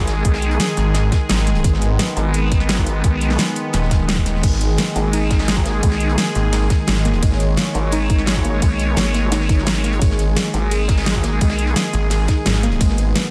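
Set in a light digital ambience, this dark, aggressive technical drum and bass excerpt at 172 BPM in G# minor pairs an airy, evolving pad of detuned sawtooth chords pumping under the sidechain with a nasal, wobbling vowel-sweep bass up front, while an overdriven electronic kick, a layered dubstep kit with a huge snare and metallic hats, and a very quiet, gritty breakbeat kit drive the beat, a snarling, detuned distorted saw bass growls in from 0.8 seconds, drops out at 7.6 seconds and returns at 10 seconds, and a soft, round, wave-folded pluck enters at 4.4 seconds with delayed arpeggios in the background.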